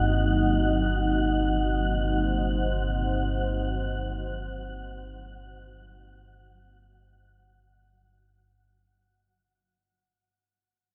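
Floating in free time, this short, cavernous dark ambient drone fragment is cut from a longer piece and feels unsettling from its first moment. A deep, ominous drone rumbles at the bottom, its wave-folded tone building on a slow attack and sustaining under a long release. Above it, a moody, warbling pad with a vintage, detuned character holds sustained chords shaped by chorus, resting on a single Cm7/G harmony. An airy, breathy, wind-like noise texture drifts over both, tuned and hovering in the upper register. All three parts sit up front inside a huge, wet reverb with a very long tail, and the whole fragment fades out across its 8.6 seconds.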